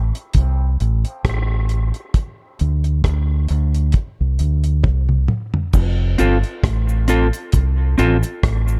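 A round, punchy fingered electric bass anchors this hazy, laid-back dub reggae excerpt at 67 BPM in F major, set against a dry, tight deep reggae drum kit whose kick, rim clicks, hi-hat, toms and crash build a drum fill near 4.8 seconds before a cabasa enters in the background at 5.7 seconds and a clean, picked electric guitar with dub echo joins at 6.2 seconds, all within a dark small-room production.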